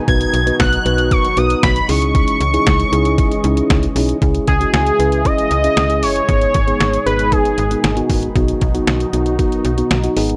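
Driving and nocturnal, this dry, gritty synth-pop clip at 116 BPM in C# minor sets a thumpy, detuned 8-bit drum machine up front alongside a snappy, metallic FM slap bass, beneath a mellow tine electric piano and an evolving, warbling sawtooth pad with subtle chorus, while a bold, retro octave-doubled lead carries the melody through chorus and tape echo until it drops out at 8.1 s, over chords moving from B through C#madd9, C#m and G#m back to B.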